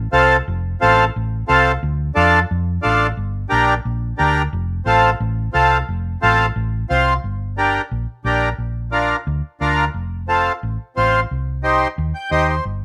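A round, dark hollow-body electric bass opens this short cumbia clip, joined almost at once by a reedy, full accordion bathed in plate reverb, both sitting up front in a rough home demo mix with light reverb. The mood is passionate and danceable, with chords moving from F through D minor and G minor before a second section shifts to G minor, B flat, F and C minor at 7.2 seconds. The accordion closes with a fill around 12.0 seconds.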